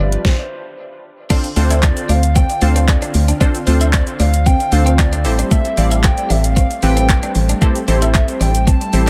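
A dark, percussive FM bass with an organ-like tone pumps up front against an overdriven pop kit of knocking kick, deep snare, handclaps, hi-hat, shaker and crash, which drops into a stop from 0.2 to 1.3 seconds before this confident, energetic dance-pop fragment settles onto Dm7 and then Am7 after opening on G7sus4. A punchy, funky sawtooth polysynth comp with a filter sweep, chorus, sidechain pumping and dub echo sits alongside a hollow, woody clarinet-like lead with vibrato, chorus and dub echo. Behind them, a picked, compressed twelve-string electric guitar riff bathed in lush chorus and dub echo rides over very quiet, mellow vintage organ-string chords, all in an echo-heavy mix with light digital ambience.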